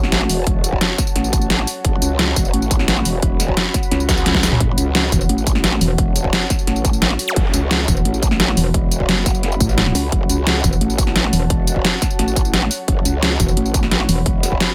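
A dry, punchy mix drives this futuristic, aggressive slice of dark technical drum and bass at 174 BPM in F# minor, where a detuned, growling bass with sidechain pumping sits up front alongside an overdriven dubstep kit of deep snare, hi-hat, tambourine and toms, joined at 0.5 seconds by a layered, punchy electronic kick. Beneath them a moody, warbling pad holds sustained vintage sawtooth chords with chorus and its own reverb, while a background swell and zap flash around a drum fill near 4.1 seconds. At 5.1 seconds a metallic FM wobble bass arrives as the loudest part, adding a hard, saturated edge to the low end.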